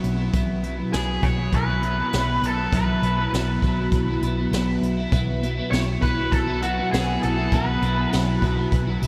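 A straight 4/4 groove from a brushed drum kit, with its high-tuned snare and boomy kick, sits under a round, dark hollow-body bass in this kaleidoscopic, trippy psychedelic rock excerpt. A bright, twangy twelve-string electric guitar plays the riff up front, compressed, double-tracked and swirling through a phaser. From 0.9 to 8.1 seconds an octave-fuzz lead guitar sings a murky, distorted melody through tape echo, all soaked in a huge, dreamy ambient reverb.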